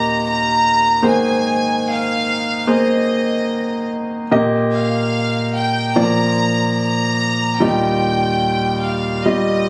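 A clear chamber violin section carries a tender melody with light vibrato and tape echo over an up-front concert grand piano, whose deep bass, long sustain and audible action noise shape an emotional 73 BPM pop passage in Eb major that moves through Abadd9, Eb/Bb and Bb to settle on Ebadd9, captured on a phone in a room with club reverb as a short cut from a longer piece.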